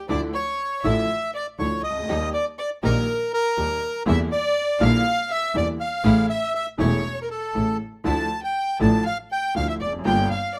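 Melancholic and tense, this rubato tango excerpt in D harmonic minor at 121 BPM sets a reedy, dark bandoneon melody up front against a rich violin second line with expressive portamento, while a woody, slightly detuned upright piano and a focused bowed double bass carry the accompaniment and bass beneath floating, pure string-section stabs in the background, all in light reverb over chords moving from Dmadd9 through Eb, Em7b5 and A to Gm7.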